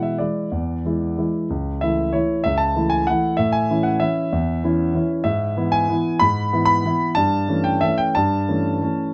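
This is a classical piano waltz in A major, set in 3/4 at 189 BPM, with a wistful, nostalgic mood. A solo concert grand carries the whole 9.1-second excerpt, its tone warm with a deep bass and placed up front, spanning from C#2 to B5. The beats fall unevenly and the time bends with rubato, giving the dance a supple, breathing feel. The harmony moves from E7/B through A/C# and A to E/G#, arriving on A7/G near 7.2 seconds. Close, detailed microphones capture the instrument with a light touch of reverb around it, and the passage is cut from a longer piece.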